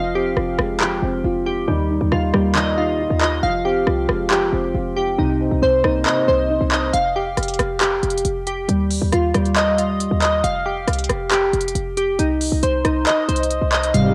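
Dry, lo-fi cassette sound frames this hard-hitting, melancholic half-time trap excerpt in F minor at 137 BPM, where glassy, phased digital keys arpeggiate through tape echo over a punchy, tight 808-style bass, a boxy, dark concert grand piano accompanies until 7.0 s, a crisp electronic trap kit of hi-hats, handclaps and rim clicks enters at 0.4 s, and at 13.9 s round, detuned synth brass stabs arrive over a barely audible brass ensemble.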